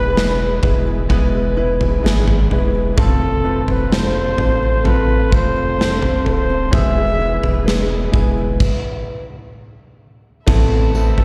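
Emotional and heartbroken, this slow pop ballad at 64 BPM in 4/4 is cut from a longer piece and carries a straight, unhurried feel. A clear, close-miked flugelhorn sings the solo melody with vibrato and scooped notes, touched by slapback and tape echo. Beneath it, an intimate concert grand piano with audible action noise and deep bass and a fingerpicked steel-string acoustic guitar, bright with fresh strings and set in the background, share slapback echo. A round sine sub bass and a veiled, very quiet con sordino string section hold up the harmony, while a huge arena drum kit with punchy kick and bright cymbals sits up front from 0.2 s. The chords move from E to F and back to E. The band stops at 8.6 s before landing on Amadd9, where a jingly, saturated tambourine appears at 10.9 s, all heard as a live gig through the venue's PA with recital hall reverb.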